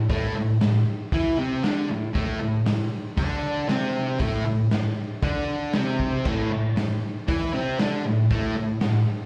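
Swaggering and raw, this short garage rock clip, cut from a longer piece, struts along at 117 BPM in a straight 4/4 and sits on an A5 chord. A fuzz guitar drives the riff from the first moment, its bright, picked tone double-tracked and compressed, with distortion and a slapback echo, ranging from A2 to E4. A raw garage drum kit joins at 0.1 seconds with crash cymbal, hi-hat, kick and snare, sounding gritty and saturated with a punchy kick, a medium-tuned snare and a rolled-off top. Both parts sit up front, and the guitar carries more weight than the drums in the balance. The whole performance comes across as a live gig heard through the venue's PA, soaked in a wet club reverb that gives it a rough, sweaty immediacy.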